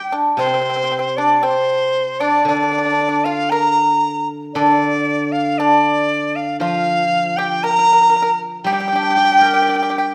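In a rubato 4/4 around 58 BPM, this graceful, tender excerpt of Chinese traditional chamber music in G yu mode sets an up-front bamboo dizi, its pure, buzzing-membrane tone shaded with vibrato and tongued notes, over a silvery, ringing steel-string zither accompaniment and a dry, percussive pipa second line, both played with fingerpicks, inside a moderate concert-hall reverb.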